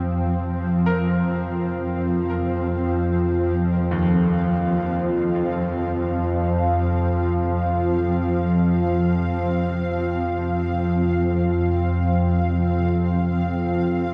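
Cavernous and dark, this dark ambient drone unfolds in free time, a short passage cut from a longer piece. Up front, an analog drone built from sawtooth and pulse waves with pulse-width modulation holds the low register through chorus and phaser, its slow attack and long release giving it an evolving, warm presence while a filter sweep moves across it. Beside it sits a granular cloud pad of detuned sine tones, blurred and full-bodied, sustaining mellow chords lifted by its own reverb and a shimmer reverb. In the background, a clear but worn grand piano traces short-sustained arpeggios through delay and shimmer reverb, fading out across the full 14.1 seconds. The whole mix rests in a cathedral-like space with a long 5.1-second decay and a dark production.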